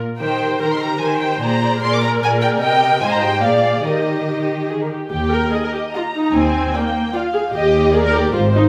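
Graceful and cheerful, this quick classical-period movement for string orchestra in 3/4 at 149 BPM moves with a rubato feel in Eb major, as a dark, softly attacked violin section carries an intimate melody over a woody second violin line, an expressive viola section with portamento supplies accompaniment, and a focused cello section anchors the bass until a smooth, even double bass section joins it at 5.1 seconds, all bathed in the wet reverb of a recital hall.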